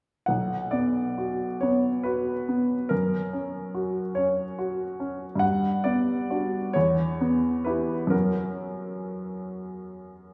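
A lush recital-hall reverb with a decay of about 1.7 seconds surrounds a woody, present upright piano, which sits up front even as the room places the listener further back. This is a romantic classical nocturne for solo piano in B minor, tuned to A4 = 441 Hz, moving in a slow, rubato 12/8 at roughly 42-49 beats per minute counted in dotted quarters. The mood is wistful and melancholic, with the piano spanning B1 to F#5 from 0.3 to 10.3 seconds. The harmony moves from Bm to F#, then through Gmaj7 and Em before settling back on F#. The passage is cut from a longer piece.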